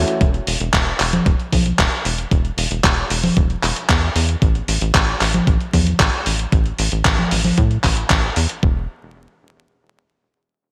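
A tight, saturated sawtooth sequencer bass with a punchy filter pluck opens this danceable, romantic italo disco excerpt, joined almost at once by a thumpy electronic kick and an up-front, gritty sampler-style soul kit of congas, handclaps and hi-hat bathed in gated reverb, all framed by bright 1980s-style digital production with light reverb and vinyl crackle until a new section arrives at 8.6 s.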